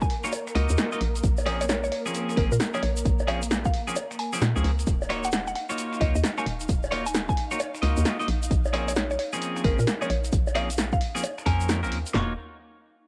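From the start, a hollow, knocking FM bass and two punchy analog drum machines with a tape-warmed kick, snares, handclaps, toms, bongos, finger snaps and hi-hat drive this soulful, late-night two-step garage excerpt with a swung feel, while a woody, round mallet-like synth pluck carries the melody through vintage 12-bit sampler grit, a silky string machine pumps softly in the background on Ebm9 and Bbm9 chords, a twangy clean electric guitar adds bright stabs with tape echo, and a grainy tube shaker sits close and dry, all under light reverb in a home cassette recording.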